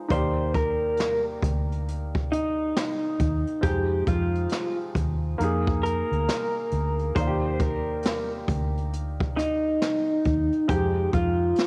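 Swung sixteenths give this unhurried lo-fi hip hop cut its cosy, mellow sway, with a jazz brush kit pairing a boomy kick and a high-tuned snare under a cassette-tape haze. A slightly broken-up electric guitar through a small old amp carries the melody with phaser and a low-pass filter, over a soft felt-muted upright piano whose audible action noise and dulled tone lend intimacy, and a dark, round, foam-muted electric bass that stays punchy. Light reverb and small room ambience frame this home cassette recording, a fragment cut from a longer piece.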